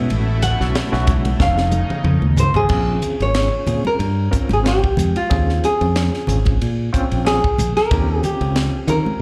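Heard through a club PA with light reverb, this intense, funky electric jazz fusion piece at 92 BPM in Bb dorian opens with a full-bodied, fingerpicked nylon-string guitar solo up front with tape echo, over a lush, detuned unison pad that stops at 2.7 seconds, a barky, overdriven electric piano with fast tremolo, a growly fingered bass, a crisp drum kit with a high-tuned snare and a fill from 1.4 seconds, and soft-handed congas in the background.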